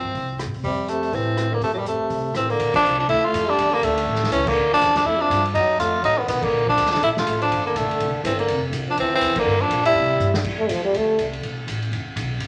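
Small-group swing-and-bop jazz with a sophisticated, playful mood, this brisk swinging excerpt puts a raspy, growling tenor saxophone up front on the melody over a breathy trombone second line with scooped notes, woody pizzicato upright bass and a dark, smooth vintage drum kit, with band accents punctuating the middle, a drum fill at 10.2 seconds leading into a trombone solo at 10.4 seconds, and vinyl crackle under a lush large-studio reverb.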